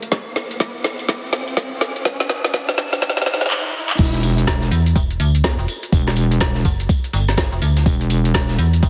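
Swinging 16ths at 124 BPM in 4/4 drive this bouncy, swaggering bass house clip in E minor, where overdriven garage drums with a woody snare, metallic hats, cabasa, claps and crash build up alongside a knocking electronic kick and an electronic riser before the drop at 4.0 s brings a heavy, saturated wobble bass with chorus and sidechain pumping, a distant brushed jazz kit with tambourine in the background, and a metallic, digital FM bass entering at 4.7 s, all under plate reverb and a heavily compressed, radio-like sound.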